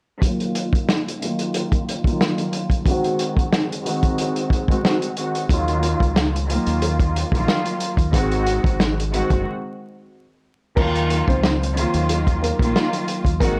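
Boom-bap hip-hop with a gritty, tough mood, moving at 91 BPM in 4/4 with a light swing on the sixteenths in E-flat dorian, cut from a longer piece. A muted string section, bowed con sordino with light vibrato and a veiled, soft-attack tone, sits up front from the start alongside a vintage drum kit whose tight kick, medium-tuned snare, hi-hat and crash carry a muffled, 12-bit sampler grit. A filter sweep runs across the strings through the first section as the harmony rocks between Ebmadd9 and Ab7. A round, punchy fingered electric bass enters at 5.5 seconds, and a break arrives at 9.4 seconds. At 10.8 seconds a dark, woody upright piano takes the melody, slightly detuned with audible action noise, long sustain and an analog delay. The sound is dry and gritty, set in a small room with vinyl crackle over the hardware-recorded texture.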